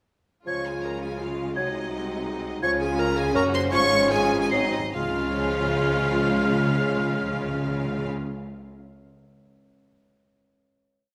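At 0.5 s a full symphony orchestra opens this short, graceful and cheerful romantic classical piece in a rubato triple metre, with bright violins singing the melody, a mellow clarinet doubling the tune at the octave, a hollow flute adding short accented chords high above, distant second violins and intimate sul tasto violas shimmering in tremolo, a dark bassoon and roomy French horns holding sustained chords, and rich cellos with doubling double basses carrying the bass, while soft-mallet timpani strike at the start, then return with a fill at 4.5 s after the music slows from 2.1 s into a final chord at 5.0 s that rings in a wet scoring-stage reverb.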